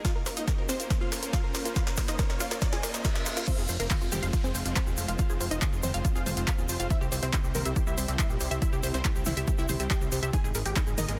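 Uplifting trance in F minor at 140 BPM, soaring and emotional, where a lush, detuned unison pluck carries the melody with dub echo over a background supersaw pad, a tight sequenced arpeggio synth with chorus and phaser, an overdriven punchy kick and analog drum machine, a grainy egg shaker and a background riser and reverse cymbal, building through a drum fill until the drop at 3.5 seconds, with the punchy, funky analog bass entering just after at 3.6 seconds, moving through Fm, C and Absus2 in a dense, heavily limited mix with sidechain pumping.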